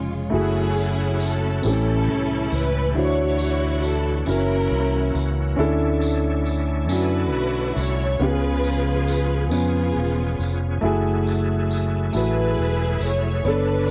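A growly, up-front fingered electric bass anchors this soulful, solemn slow gospel excerpt in 6/8, beneath a lush, bowed string section carrying the melody with expressive vibrato and plate reverb, an intimate concert grand piano with audible action noise, a bright, lightly overdriven tonewheel organ holding sustained chords through a slow rotary speaker from 0.3 s, and a jingly, distant tambourine entering at 0.8 s, the whole recording coloured by a worn, warbling cassette-tape pitch drift and small room ambience.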